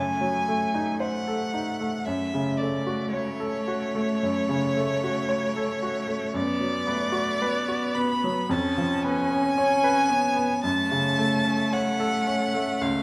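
A rich, vibrato-laden bowed violin carries the melody up front in this solemn, yearning slow romantic movement for piano trio, cut from a longer piece in F# minor at 56 BPM with a rubato feel and tuned to A4 = 438 Hz. Beneath it, a smooth, even bowed cello sings a second line, while a clear baby grand piano with short sustain, also up front, supplies the accompaniment through a harmony moving from F#dim7 to F#m, Bm/F# and C#7/E# before settling back on F#m. All three play throughout the 13-second passage, set in a moderate recital hall reverb.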